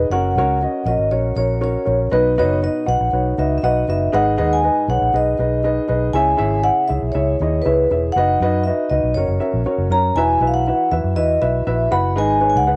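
Uptempo 1960s-style soul at 119 BPM in B major, joyful and warm, where a soft-mallet vibraphone carries the ringing, airy melody with slow motor vibrato over a woody, boxy upright piano with audible action noise and a round, punchy, foam-muted electric bass, all set in a small room with light reverb as the chords move from F# through B, G#m and C#m before shifting at 10.2 s to Esus2 in this short excerpt cut from a longer piece.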